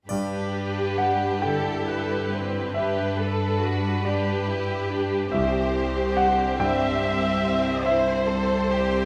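Bathed in a recital-hall reverb, this tender, hopeful cinematic score moves in a rubato 6/8 as distant, lush violins carry the melody over a smooth second violin line, with expressive violas and a bright, polished grand piano accompanying, intense up-front cellos holding the bass, and a close, dry triangle sounding only through the first 1.8 seconds, as the harmony settles from Gsus2 onto C at 5.3 seconds.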